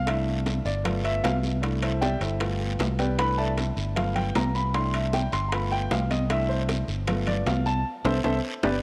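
Afro-Cuban jazz at a sunny, danceable 154 BPM in C major, this short cut from a longer piece puts an intimate grand piano with audible action noise up front, soloing over a C6/9 and G7 vamp alongside a growly, bright fingered electric bass, while high-tuned congas with a thin damped skin, tight, very quiet bongos, ringing metal-shell timbales and a raspy guiro fill the small, lightly reverberant room before the band hits an accent on C6 at 7.9 seconds.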